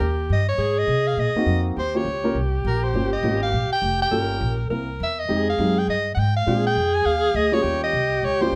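A brisk swing at 204 BPM in 4/4 drives this sophisticated small-group jazz excerpt in Eb mixolydian, where a bright, vibrato-laden soprano saxophone carries the melody with a subtone edge and plate reverb, a punchy alto saxophone with scooped notes adds a forceful second line, a woody, thumpy upright bass anchors the bottom, and a warm grand piano with short sustain joins at 1.4 seconds, all moving through chords such as Ab9, Gm7b5, C7 and Bb9 in a moderate studio room.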